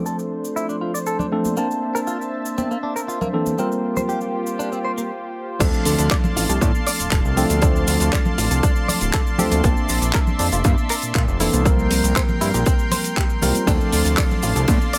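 A straight 4/4 groove at 119 BPM drives this groovy, cosmic nu-disco clip in D minor, where a dry, airy funk kit with handclaps, hi-hat, shaker and cymbals joins bright background cabasa and congas, a twangy, direct-recorded clean electric guitar riff and a lush detuned unison pad share a filter sweep, and a tine electric piano pumps and throws dub echoes over Dm7, Bbmaj9#11 and C7sus4 until a brief break at 5.1 seconds gives way at 5.6 seconds to a drop where an overdriven, punchy electronic kick sits up front and a fat, saturated sawtooth analog bass takes the low end.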